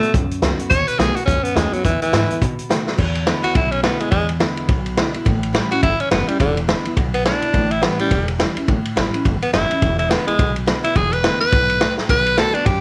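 Rowdy and rollicking, this rockabilly cut is taken from a longer piece and swings lightly in 4/4. A raspy tenor saxophone carries the melody up front, its gritty, scooped notes carrying a light vibrato, and it takes a solo from 3.0 seconds to the end. Beneath it, a picked steel-string acoustic guitar with old strings gives full-bodied accompaniment, while a pizzicato upright bass with gut strings adds a thumpy, woody bottom. A vintage drum kit sits forward with a punchy kick, a medium-tuned snare and dark cymbals, and drum fills land at 2.8 and 11.9 seconds. The changes move among dominant seventh chords on B, E and A, and a light, small-room reverb gives the band a close, intimate sound.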